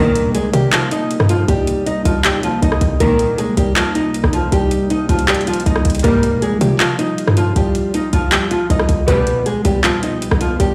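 Brooding and dark, this half-time trap beat is cut from a longer hip hop piece and sits on a Cm7 harmony before turning to G/C at 9.1 seconds. A dark, fingerpicked nylon-string guitar carries the melody up front, its small acoustic tone marked by finger squeaks and trailed by tape echo. Behind it, an airy, breathy pad holds sustained chords in the background, its detuned sawtooth and triangle layers softened by a slow attack, a long release, a moving notch and chorus. A clear symphonic string section adds short bowed stabs with light vibrato, first at 0.0 seconds and then roughly every three seconds. The low end comes from a short, punchy 808-style bass with a fast attack and decaying sine tone, joined at 0.2 seconds by a booming analog drum machine with metallic hi-hats, handclaps and rim clicks, re-recorded in a small room. The whole mix sounds as if played on a big sound system in a bare room, with light reverb and a large studio reverb.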